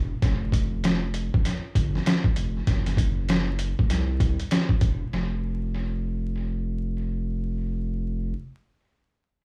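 Soulful and nostalgic, this short boom-bap hip-hop fragment at 98 BPM swings its 16ths over a deep, saturated sub bass that sits up front from 0.0 to 8.3 seconds, joined from 0.2 to 5.0 seconds by a gritty, pitched-down sampler-style drum kit with a thumpy kick, medium-tuned snare and hi-hat soaked in tape echo, all in a dry, echo-heavy mix dusted with vinyl crackle.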